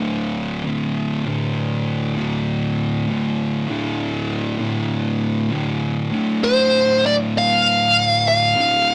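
Metal excerpt, ominous and brooding at 99 BPM in D minor, where a double-tracked, distorted fuzz guitar riff sits low and up front on a D5 chord from the start, joined at 6.4 seconds by a dark, compressed fuzz lead guitar melody with wah, all in a rough rehearsal-room recording with tube saturation and a small room's moderate reverb.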